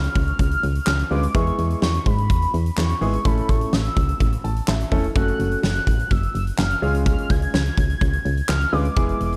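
A huge arena drum kit drives this synth-pop piece at 126 BPM in a straight 4/4, its punchy kick, fat snare, hi-hat and handclaps sitting up front beside a round, punchy FM bass in a nocturnal, cool mood. A velvety, mellow synth lead with chorus, vibrato and analog delay carries the high melody over chords moving through C#, E, A and F#m, while a clear, polished baby grand piano joins at 1.1 s and adds a fill at 4.2 s. The production is dark and warm, set in a small room ambience, and the passage is cut from a longer piece.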